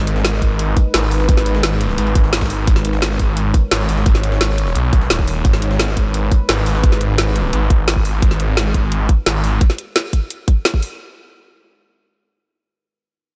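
Mechanical and futuristic, this excerpt from a dark technical drum and bass track drives at 173 BPM in G# minor, built over a G#madd9 chord, with a snarling, detuned sawtooth bass up front that growls through distortion and overdrive, pumping against the sidechain until 9.6 seconds. A tight electronic kick and a produced drum and bass kit with a woody snare and bright hats sit close in a small room, while a gritty, compressed breakbeat kit with a high-tuned snare lurks very quietly beneath until 6.8 seconds. Behind them a deep, moody pad holds sustained chords with chorus and reverb, its wave-folded, ring-modulated tone ending at 8.2 seconds.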